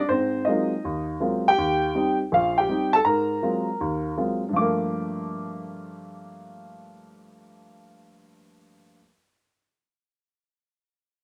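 A rough home-demo sound with moderate studio ambience frames this short fragment of solo jazz, cut from a longer piece. A warm baby grand piano sits up front with a natural tone, swinging and moody as it plays alone from 0.0 to 9.0 seconds across a span from Bb1 to D6. Its harmony moves through Ab13 and Eb6 before settling onto Gm9 at 4.5 seconds.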